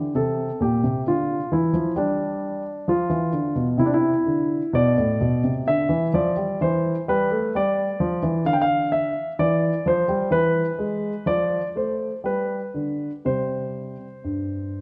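Flowing and radiant, this short excerpt from a longer piece is a baroque-style suite movement for solo grand piano in 3/4, moving at around 64 BPM with a rubato feel and uneven beats. The piano is warm and up front, carrying the whole passage alone from 0.0 to 14.8 seconds across a range from G2 to G5. The harmony settles in C major by 4.7 seconds, moving through G7, C/E and a bare G5 before stepping through E, F and G and arriving on C5 at 13.2 seconds. A moderate recital hall reverb gives the instrument a sense of space, while the production leans dark overall. The result feels graceful and unhurried, with the elastic timing lending the dance-like metre a personal, expressive quality.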